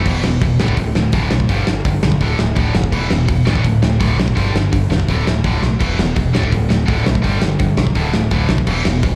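A tight, double-tracked distorted guitar riff and a growling, overdriven picked bass kick off this energetic, rebellious punk rock excerpt at 167 BPM, cycling through E5, D5 and G chords over a straight 4/4 pulse. A big acoustic rock kit with a fat snare, punchy kick, crash and hi-hat drives alongside, sitting up front with the bright, slapback-echoed guitar, and a drum fill lands at 5.6 seconds. The whole thing sounds like a live club gig heard through the venue's PA, wrapped in light room reverb.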